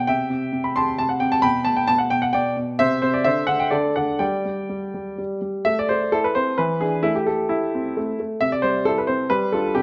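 Elegant and playful, this classical-period piano sonatina moves in 3/4 at 132 BPM, shaped with a rubato feel. A lone grand piano carries the whole excerpt, its tone warm, present and up front, ranging from B2 to C6. The music begins in G major, passing through harmonies such as G/B and D9 before settling on a bare G5 sonority. At 5.7 seconds the second section turns to A minor, with E7 leading back to A minor, then a move through C to a closing G7 at 9.3 seconds. Close, detailed microphones catch the instrument while a moderate recital hall reverb lends a gentle sense of space around it.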